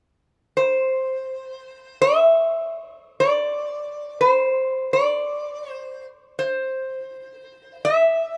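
A metal-body resonator slide guitar enters at 0.6 s and carries this short Hawaiian fragment alone until 8.4 s, sounding like a passage lifted from a longer piece. The mood is languid and relaxed, moving at an unhurried 83 BPM in 4/4 with a gentle swing on the eighth notes, all in C major. Played with fingerpicks and a slide, the guitar has a metallic, nasal bite, its line sitting in a narrow span from C5 to E5. It is placed up front, caught by close, detailed microphones that bring out its acoustic body. A light reverb lends a little air around the instrument, keeping the sound intimate and easygoing.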